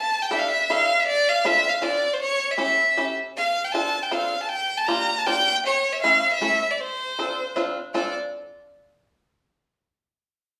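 A bowed violin opens this short musette waltz, its single bright, intense voice sitting close and up front with a singing vibrato as it carries the melody between C5 and Bb5. At 0.3 seconds a bluegrass banjo joins underneath, its twangy, percussive fingerpicked accompaniment lower in the mix and moving between A3 and A4. The tune moves at 157 BPM in 3/4 with a lilting swing on the eighth notes, in D minor with the tuning set slightly low at A4 = 436 Hz, and the harmony circles through A7sus4, Dm7, A7, Gm7 and A. The mood is bittersweet and nostalgic, like an old dance-hall memory. The pair play live together in a stone room whose wet reverb lends a sense of space, and a new section arrives at 7.9 seconds in this excerpt cut from a longer piece.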